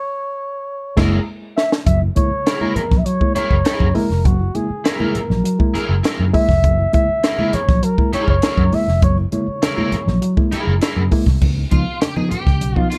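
Funk at 100 BPM in a straight 4/4, this short cut from a longer piece feels gritty and playful under a dark, warm production with light reverb. A mellow flugelhorn opens alone on the melody with light vibrato and scooped notes in a vintage jazz style, playing until 10.5 seconds over a Gb9 chord. At 1.0 seconds the band enters within an opening accent, and a drum fill follows at 1.3 seconds, with a compact cocktail kit sitting up front: dry, with dark cymbals, a high-tuned snare and a punchy kick. Foam-muted fingered electric bass adds a round, amped low end, while a reedy, worn electric piano, slightly out of tune and heard through its built-in speakers, plays stabs through tape echo. A twangy, picked electric guitar at the edge of break-up carries accompaniment through an ensemble chorus, and low-tuned congas join at 1.9 seconds, distant in a large room. At 11.4 seconds the harmony moves to Db9 and a clean electric guitar solo closes the cut.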